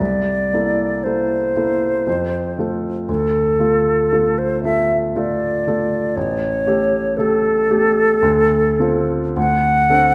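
A mellow, hollow silver concert flute sings the melody over a baby grand piano's intimate accompaniment, in a tender romantic classical duo taken from a longer piece, moving at a slow 58 BPM in 3/4 with a loose rubato feel. The flute is airy and up front, with a soft attack and vibrato, while the piano sits close and natural, its action noise audible, as the harmony passes from C13 through F and Dm to A7 and on to D7. Both instruments play throughout the 10.1 seconds, bathed in a wet recital hall reverb that lends the duo a warm glow.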